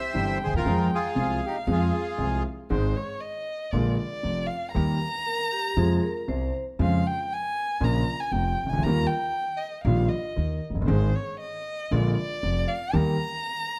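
A dark, warm production set in a moderately large studio room gives this short tango excerpt a tense, dramatic air, moving at 117 BPM in 4/4 with a rubato feel in Ab major. A reedy, bright bandoneon carries the melody up front only briefly at the start, stopping at 2.4 seconds, while a close, bowed violin with vibrato, soft attack and portamento sings an expressive second line and takes a solo from 2.7 seconds to the end. Underneath, a concert grand piano with deep bass and long sustain lays down a smooth, vintage-toned accompaniment, joined by a woody, pizzicato upright bass with steel strings holding the low end. Around 5.3 seconds a vibraphone played with medium hard mallets adds a metallic, ringing second line with slow motor vibrato for just over a second. The harmony moves from C and Fm into Ab, Bb7 and Eb, passing through Fm, Db/F, Bbm and Ebadd9, then returning through Ab and Bb7 to settle again on Eb.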